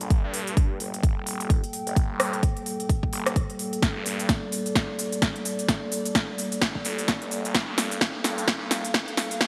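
Bass house at 129 BPM in G minor with a 16th-note swing, this swaggering, aggressive excerpt is one long build-up under a filter sweep, resting on a Gmadd9 chord voiced by a deep, moody analog pad with chorus and sidechain pumping. A swirling, thick detuned saw bass, saturated with overdrive and phaser and also pumping, runs until 8.8 seconds. Up front, a punchy electronic kick enters at 0.1 seconds beside a tape-tinged big-room kit of crisp hats, rim click, shaker and snare, which breaks into a drum fill from 3.8 seconds, all in a light reverb.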